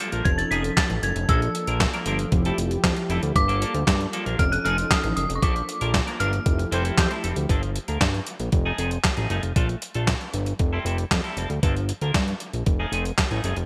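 A dark, eerie FM synth bell melody with chorus and digital delay opens this smooth, feel-good stretch of early-eighties boogie funk, over round, detuned synth brass, a clean, twangy picked electric guitar riff with analog chorus, and an up-front 12-bit drum machine with a thumpy kick, snare, hi-hat and handclaps in gated reverb. A fat, saturated analog bass joins at 0.1 seconds, and a tight background horn section with octave doubling slips in around 6.7 seconds during a band accent; after the bell and brass fall away by 7.5 seconds, guitar, bass and drums carry on. The production is bright and digital, with light reverb.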